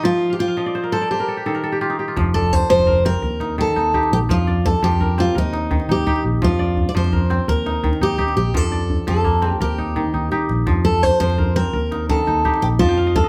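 A live band in one large studio room, with moderate reverb giving the sound some air, plays this joyful, hypnotic West African string and xylophone music in F mixolydian at 113 BPM in a straight 12/8. A bright, full-bodied steel-string acoustic guitar carries the melody up front from the start, while a crisp, ringing kora spins fingerpicked arpeggios alongside it and adds fills in the opening seconds and at the very end. At 2.2 seconds a warm, amped fretless electric bass and a deep djembe played with hard hands join in, and the djembe takes a fill at 9.8 seconds. The harmony moves back and forth between F and Eb, which keeps the groove circling. Cut from a longer piece, it ends at 13.3 seconds.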